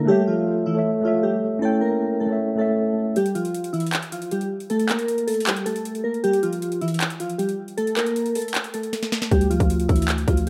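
Hip hop in a trap style at 156 BPM with a half-time feel, this eerie, melancholic fragment of a longer piece opens on glassy digital keys carrying the melody through chorus, a low-pass filter and tape echo, over a mellow tine electric piano that sounds as if heard through built-in speakers. At 3.2 seconds the harmony moves from A to Gm9 as the electric piano drops out and an overdriven trap kit arrives up front, with a hard-clipped kick, sharp snare, metallic hats and handclaps, then a drum fill leads to 9.3 seconds, where a growling, buzzy 808-style bass lands under a Dsus2 chord. Light reverb and digital ambience surround a rough home demo mix.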